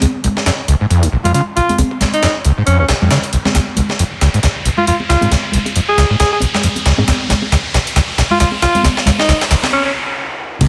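Funky, energetic breakbeat with a swung sixteenth-note feel, cut from a longer piece, builds over a Db7 chord as a squelchy, screaming distorted acid riff sweeps through its filter over gritty, compressed sampler-style drums with a thumpy kick and high-tuned snare, ringing close congas and electronic risers and noise sweeps, while a bright alto saxophone with light vibrato and scooped notes sings through a lo-fi, small-speaker haze with 12-bit grit and tape echo, and a drum fill from 3.5 seconds leads to a break at 9.7 seconds, where a dark, round fingered electric bass lands up front at 10.6 seconds amid vinyl crackle.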